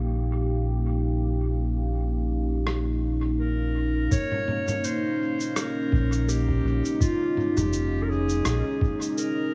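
A deep, moody pad with chorus and reverb holds sustained Bb minor chords over a round, tube-saturated analog bass as this hazy, meditative ambient dub fragment opens at 83 BPM in Bb dorian, with a filter sweep running through its first 4.1 seconds. A muffled, tape-toned sampler kit of cabasa, rim click and toms enters with dub echo, followed at 3.4 seconds by a distant, roomy clarinet melody with its own echo, and at 4.1 seconds a thumpy, compressed electronic kick arrives as the harmony moves to Bbm7. The mix sits in light digital ambience with a low-pass, small-room cast and a gentle 16th-note swing.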